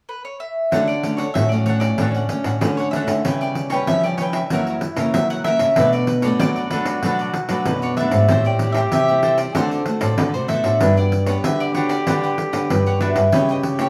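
A picked mandolin, bright and woody with its doubled strings, opens the melody alone before a small group joins at 0.7 seconds in this sunny, playful samba and choro excerpt in a straight four. A clear, vintage trombone adds a jazz-style second line, while a crisp cavaquinho and a fresh-stringed, fingerpicked nylon-string guitar set back in the mix fill the accompaniment over a thumb-plucked nylon-string bass guitar that sits up front with a classical tone. A jingly pandeiro played with soft hands keeps the percussion going beneath light reverb as the chords move from Dmaj7 through Bm7 and D7 to Gmaj7.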